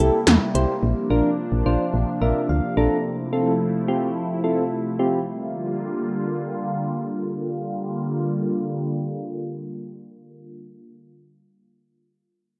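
A swirling, detuned analog pad with phaser and chorus holds mellow sustained chords until 10.5 seconds in this cool, nocturnal synth-pop excerpt in G dorian at 108 BPM. Soft, rounded electric-piano-like synth keys with tremolo and a filter sweep play accompaniment and a brief fill, alongside a punchy, dark FM bass that stops at 2.9 seconds and a short burst of 80s electronic drums with gated snare and metallic hi-hats. A wet plate reverb surrounds the rough home-demo mix as the chords move from C7 through Bbadd9 and Fmaj7 to Gm7.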